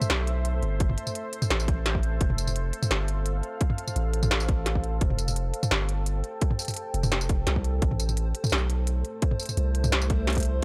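Dark and cinematic, this half-time drum and bass cut from a longer piece moves at 171 BPM in A minor, tuned to A4 = 442 Hz, shifting from Am to F at 2.2 seconds and back to Am at 7.8 seconds. A deep, moody pad of detuned sawtooth unison with a sub octave, wave-folding and ring modulation holds sustained chords throughout, softened by chorus and its own reverb and pulsing with sidechain pumping. An industrial drum kit of clanging snare, crisp hats, tambourine and toms sits up front with a tape-warm edge, joined at 0.8 seconds by a hard-clipped, overdriven electronic kick. Underneath, a long sine 808-style bass with a fast attack and mellow decay anchors the low end, while a dreamy, reversed granular texture swells in the background from 8.1 seconds, bright and detuned with a reverb tail. The recording itself is dry and gritty, with hardware transformer saturation giving the mix a rough, close-up character.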